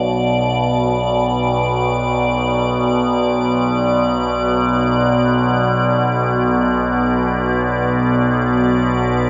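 In free time, this dark, cavernous ambient passage in B minor sets an up-front, resonant drone with moving overtones, sustained from B1 to B2, beneath a fainter icy, crystalline glass pad held on D5, both treated with chorus and sitting in a wet echo chamber across the full 9.3 seconds of this fragment cut from a longer piece.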